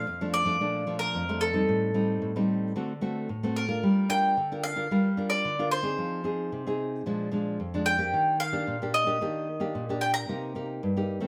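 A moderate studio reverb gives this short, playful samba cut an airy room around two acoustic instruments, both placed up front, moving at a lively 112 BPM in straight 4/4 in Bb major. A bright, woody mandolin carries the picked melody on its double strings, while a fingerpicked nylon-string guitar supplies warm classical accompaniment, its finger squeaks audible, through a jazzy progression from Bbmaj7 and Am7b5 to D7, Gm7, Fm7, Bb7 and Ebmaj7. The mandolin drops out at 10.6 seconds, leaving the guitar alone on Cm7 until the cut ends at 11.3 seconds.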